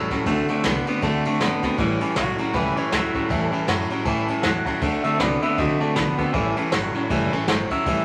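A bright, clean electric guitar riff sits up front beside a picked dreadnought acoustic guitar accompaniment and a thumpy, woody pizzicato upright bass in the background, with a jazz drum kit played with brushes joining at 0.1 s up front with a boomy kick and dark cymbals, while an electric guitar through a small old amp carries a slightly broken-up melody further back, in this rollicking, upbeat rockabilly cut from a longer piece at 158 BPM with a swung feel in A mixolydian, moving between D7 and A7 in a wet studio ambience under vinyl crackle.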